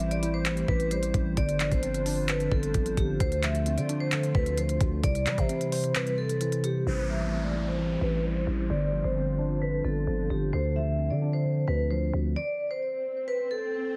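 A ringing, metallic vibraphone carries the melody of this melancholic, dark trap excerpt, struck with medium hard mallets and shimmering with a fast motor vibrato, softened by a low-pass filter and trailed by tape echo. Beneath it, a mellow tine electric piano plays clean chords through a lush chorus, while a hollow, flute-like pad sits far in the background with slow-attack, long-release sustained harmony moving through Am7, G7sus4, Dm7 and C in A minor. A growling, buzzy 808-style bass and an up-front electronic kit with a knocking kick, crisp hats and handclaps drive a half-time feel at 131 BPM. The kick drops out briefly before the drums stop at 6.7 seconds, and from 6.9 seconds a filter sweep and an electronic downlifter usher in a sparser second section. At 12.4 seconds the bass and keyboards fall away, leaving the vibraphone's last ringing notes and a swell over a dry, heavily compressed, radio-like sound.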